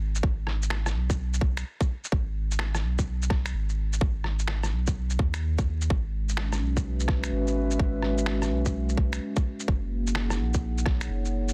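A dry, dense and heavily limited mix frames this ghostly, nocturnal future garage excerpt at 127 BPM in G# minor, swung on the sixteenths. A soft, round dub sub bass pumps under the sidechain beside a tight, overdriven kick with 12-bit sampler grit, while muffled, pitched-down shaker, rim click and finger snaps add a compressed, gritty texture. At 5.9 s a moody, detuned analog pad with chorus and a slow attack enters up front, shifting the harmony from G#m to C#7sus4/G# and then F#.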